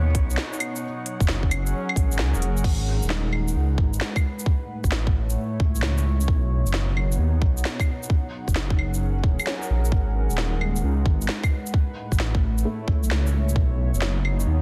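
A menacing, detuned saw bass with tube saturation pumps up front through this ghostly, melancholic future garage excerpt, joined by a tight electronic kick and a swung kit of woody snare, crisp hats, claves, shaker and crash, under a warbling, nostalgic tape-like pad, a boxy felt-muted upright piano with audible action noise and 12-bit grit that plays from 0.0 to 4.5 and again from 8.6 seconds, and a breathy, wind-like noise texture that ends at 2.7 seconds.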